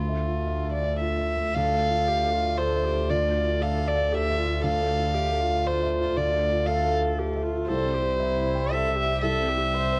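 Neoclassical piano and strings in a rubato triple metre, reflective and longing, cut from a longer piece. A rich, floating violin carries the melody up front, bowed sul tasto, over a soft felt-muted upright piano whose thick felt and audible action noise lend an intimate feel, while a reedy, breathing pedal harmonium holds very quiet chords and a dark, tube-saturated double bass anchors the low end; a warm viola with light vibrato and airy bow joins at 1.5 s. The harmony rests on Dmadd9 before moving to C at 7.7 s, and the sound sits in moderate spring reverb and studio ambience with the warbly pitch drift of worn cassette tape.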